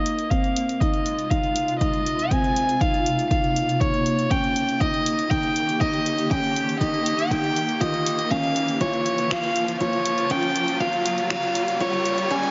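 A tender, luminous piano-and-strings electronica build-up in Ab major at 120 BPM opens with a bowed, sul tasto violin melody floating up front through a filter sweep, over a mellow, boxy felt-muted upright piano riff and a blurred granular cloud pad whose slow-attack chords pump with sidechain and carry their own reverb. A layered deep house kit of finger snaps and hi-hat arrives at 0.1 seconds with a punchy electronic kick at 0.3 seconds, and an electronic riser climbs in the background from 3.7 seconds. The whole is bathed in a lush hall reverb with digital ambience and a soft, rounded top end.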